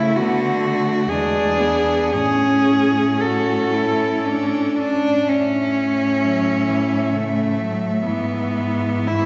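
Classical and lyrical, this serene, tender excerpt for cello ensemble moves in a rubato 3/4 at 55-68 BPM in A major, with four bowed cellos playing together throughout its 9.3 seconds. Up front, the top cello carries the melody with a light vibrato, soft attack and airy, intimate bow, while a second cello adds a smooth, even line beneath and a third fills in accompaniment, both rich and close. A focused bass cello anchors the harmony as it passes from D through E7 to A and settles on E/G# near 8.1 seconds, the whole group bathed in a lush reverb that suggests a church or concert hall.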